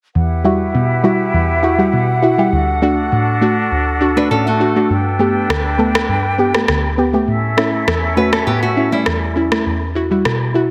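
Hypnotic and tough, this dancehall excerpt moves at 101 BPM in E dorian, opening with a soft, round, dark pluck carrying the accompaniment with chorus alongside airy, mellow flute group chords shaded with vibrato, over a progression from Emadd9 through D, Gadd9 and A. A fingerpicked nylon-string guitar adds small acoustic arpeggios from 4.2 s, and an analog electronic rim click with soft clipping on the snare joins at 5.5 s. The kick drops out from 7.3 s to 9.7 s, all within light small-room reverb and a dense, heavily limited master.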